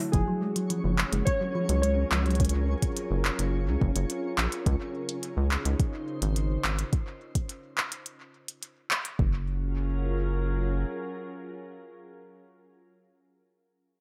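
Lightly reverberant and tape-warm, this wistful, intricate IDM fragment in Gb lydian at 106 BPM sets a glassy, ethereal FM pad with ensemble chorus under a brief round, tine-like pluck arpeggio and a warbly lo-fi keys melody that both stop at 2.4 s, while a rubbery, hollow square bass, deep electronic kick and a glitchy kit of clicky hats and handclaps drive things up front, a faint twinkling granular shimmer sparkles in the background, and the harmony moves from Gbmaj9 to Dbmaj9 at 4.7 s before the pad sustains alone after the bass drops out at 10.8 s.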